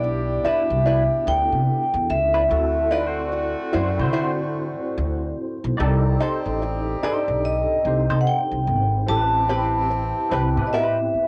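A lightly reverberant cassette home recording carries this smooth, warm neo-soul R&B fragment in swung 4/4, where an up-front vibraphone with medium hard mallets sings the ringing, metallic melody with slow motor vibrato, a dark, compressed hollow-body jazz guitar adds a picked second line through wah, a barky, slightly out-of-tune tine electric piano comps through ensemble chorus, a distant, roomy horn section punctuates with stabs, and a woody, growly pizzicato upright bass with transformer saturation anchors the movement from Cmaj9 through D9 and Cm6 to Am9.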